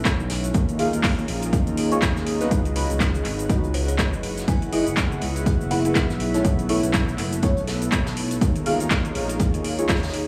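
A light, small-room digital ambience surrounds this deep, smooth deep house excerpt at 122 BPM in 4/4, with a 58% swing on the sixteenths and tuning set to A4 = 438 Hz. A punchy, tape-toned electronic kick sits up front, joined by an overdriven, layered house kit of handclaps, metallic hi-hats and shaker, plus a very quiet acoustic kit whose hi-hat and medium-tuned snare add a faint natural edge. Beneath them, a dark, sustained synth bass mixing sawtooth and square tones with a touch of ring modulation pumps against the sidechain. A vintage, detuned analog pad with lush chorus and a lo-fi, nostalgic tape-like pad with its own reverb hover in the background, both breathing with the same pumping. Soft, decaying chord stabs shaded by chorus, phaser and analog delay move through suspended ninth chords such as B9sus4, D#9sus4, C#9sus4 and F#9sus4. From 3.7 to 6.3 seconds, a woody, buzzing kalimba with analog delay rings out a brief melody in the background.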